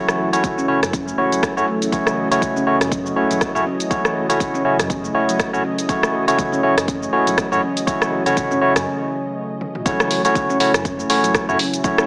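A barky, up-front tine electric piano plays clean stabs through a combo amp with tape echo in this hypnotic afro house excerpt, over ringing, meditative handpan arpeggios, a smooth detuned sawtooth pad of sustained chords sitting in the background, a deep, dark analog bass, a punchy layered electronic kick and a house kit of hi-hat, rim click, shaker and toms with warm hats, all pumping to a sidechain except the drums, with a break at 8.9 seconds giving way to a drop at 9.9 seconds, heard through the sound of a small speaker.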